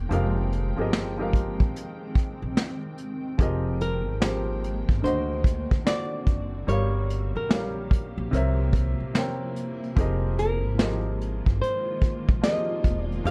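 Lo-fi hip hop at 73 BPM with a hazy, nostalgic mood in F dorian, where a boxy fingerpicked flamenco guitar carries the filtered melody over a soft, felt-muted upright piano with a cassette-tape tint, a blurred, evolving granular cloud pad holding sustained chords, a woody pizzicato upright bass up front, and a vintage brush drum kit entering at 0.1 s with a tight kick and rolled-off top, all set in a dark production with light reverb as the chords move from Fm11 through D7b9, Gm7b5 and C7b9 back to Fm11.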